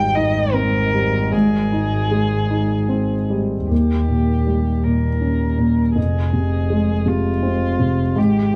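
A dark grand piano sits up front in this brief 8.6-second cut from a longer neoclassical piece for piano and strings, its mellow, intimate tone carrying the accompaniment in the low and middle register, with the natural noise of its action audible. Above it, a single muted violin bows the melody from a distance, its veiled sound touched with vibrato. A lone double bass, also bowed con sordino, adds a soft-attacked line underneath with gentle vibrato. The music moves in a slow, rubato 6/8 at roughly 49-56 dotted-quarter beats per minute in A-flat major, opening on Abmaj7, turning to Eb7 at 3.7 seconds as a new section begins, and settling on Fm at 6.0 seconds. Light reverb and a shadowy, warm production frame the tender, hopeful mood.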